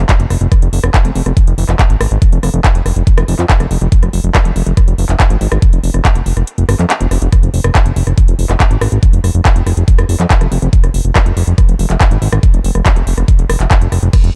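Psychedelic trance with a driving, psychedelic mood, this short excerpt is built on a fat, thick analog bass of detuned, saturated sawtooth tone, sitting up front from F1 to F2, beside a knocking, tape-warm electronic kick. A layered electronic drum kit adds handclaps, metallic hi-hats, ride cymbal and rim clicks at a lower level, with a small-room character. The kick drops out from 6.5 to 7.3 seconds before returning, all within a dark, dry production.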